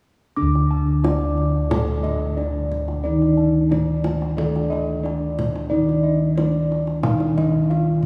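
A low bronze metallophone stands out in this hypnotic, stately excerpt of Javanese gamelan, its close-miked, dry and full accompaniment sounding in the low register from 0.4 s. Above it, a second metallophone carries the melody with a dark, smooth ring from padded disc mallets. Bossed gongs play round, beating arpeggios in the high register, while another set of bossed gongs holds the bass with a boxy, small-room character. A kendang joins at 0.6 s, tight and band-limited under soft hands, giving a vintage touch to the steady 90 BPM pulse in 4/4 that continues to 8.1 s. The recording sits in a long cathedral reverb, so the mellow bronze tones hang in a resonant hall.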